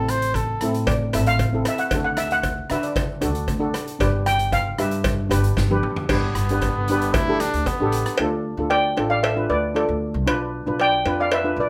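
A shimmering lead steel pan rides up front in this festive, carefree calypso excerpt at 115 BPM, carrying the melody over a mellow, dark second pan played with soft rubber sticks. A growly pizzicato upright bass, a cowbell and an airy street-band drum kit with a boomy kick and dark cymbals drive the straight 4/4 groove, with a drum fill at 5.6 seconds. A trumpet with light vibrato sounds briefly at the opening, then steps forward as a second line from 6.1 to 8.2 seconds, all set in a moderate studio reverb.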